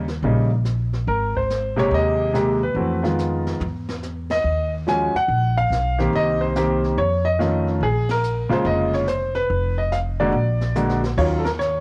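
This home recording on cassette has a light studio reverb and an intimate, close feel. It is a moody, swinging jazz piano trio passage in 4/4, cut from a longer piece, with a moderate swing on the eighth notes. The clear baby grand piano carries the melody up front, ranging from C3 to Ab5, with its action noise audible and a cassette tape coloring of its own. The upright bass is played pizzicato on steel strings, sounding woody and close, while the brushed drum kit sits further back in a small, natural room with dark cymbals, a medium-tuned snare and a boomy kick. The harmony moves through rich, shaded chords such as Abmaj9, Fm7b5, F7b13 and Bbaug7 before settling on Ebm9. The drums play a fill from 3.2 to 4.0 seconds, and the whole band hits an accent at 8.0 seconds.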